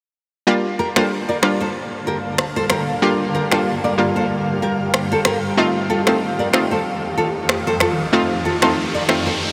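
A round, vintage-toned analog pluck opens this mellow, hypnotic afrobeats cut at 0.5 s, bright and up front with a warbling chorus and filter sweep. It is soon joined by a full-bodied fingerpicked nylon-string guitar riff with finger squeak and tape echo, produced electronic finger snaps and rim click, and a cloudy, evolving granular pad. At 94 BPM with a lightly swung 16th feel in G minor, the harmony moves from Gm7 to F7 at 5.6 s, and a background riser enters at 7.3 s, all set in a dreamy mix soaked in huge ambient reverb.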